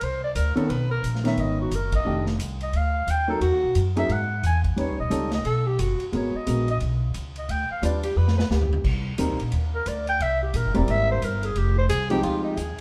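A moderate stone-room reverb surrounds this live small-group swing and bop excerpt, played by a band together in one room, with a cool, smoky mood at 177 BPM in 4/4 and a swung eighth-note feel. A raspy, growling clarinet carries the melody up front, its light vibrato, subtone and scooped notes giving it a gritty edge. A breathy, whispered tenor saxophone adds an intimate second line in short passages, first entering at 0.4 seconds. The woody, thumpy upright bass is plucked on gut strings, while a warm grand piano with long sustain supplies present accompaniment through richly extended chords. A vintage drum kit with dark cymbals, a punchy kick and a rolled-off top sits lower in the mix, while the band hits an accent at 1.9 seconds and the drums play a fill just before the harmony settles into C minor at 8.8 seconds.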